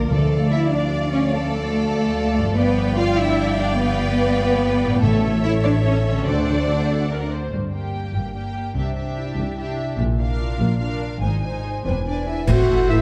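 A triumphant, adventurous cinematic film-score cue in 6/8 at 97 BPM in D harmonic minor opens with lush, vibrato-laden violins carrying the melody over a second violin line, smooth violas, ringing fingerpicked harp arpeggios, focused cellos and up-front double basses, with dark French horns holding distant chords and very quiet, round timpani beneath; a band accent at 12.5 s then brings in a hollow flute group, a barely audible clarinet, a warm oboe and close, dry cymbals with bass drum, followed by tight trombones and a mellow, punchy trumpet stab at 12.9 s, in a moderate scoring-stage reverb.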